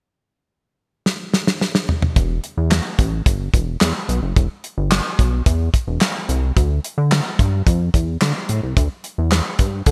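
A straight 4/4 groove at 109 BPM drives this danceable, late-night early-eighties boogie funk in E phrygian, tuned to A4 = 438 Hz, where a dry, airy, damped 70s drum kit with tight kick, medium-tuned snare, hi-hat, toms and handclaps rolls through a fill from 1.1 seconds before a glossy, saturated synth bass of pulse and sawtooth waves, with pulse-width modulation, a filter pluck and chorus, enters up front at 2.2 seconds, set in a bright 1980s-style digital production with light reverb.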